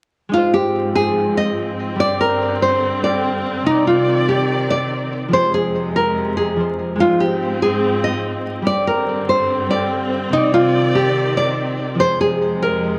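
Hip hop with a dark, ominous mood, this excerpt moves at 144 BPM in 4/4 with a half-time feel, set in C minor and tuned slightly low to A4 = 439 Hz. A nylon-string guitar carries the melody up front, its full-bodied, deep classical tone fingerpicked and softened by a low-pass filter and tape echo. Beneath it a concert harp plays fingerpicked, ringing accompaniment, also dulled by a low-pass filter. A distant studio string section holds sustained bowed chords with vibrato, soft attacks and expressive portamento. The chords cycle through Ab6, Gsus4, Cmadd9 and Fm twice, all three parts playing together from 0.3 seconds to 13.0 seconds, while vinyl crackle and a moderate recital hall reverb with small room ambience give the sound a dusty character.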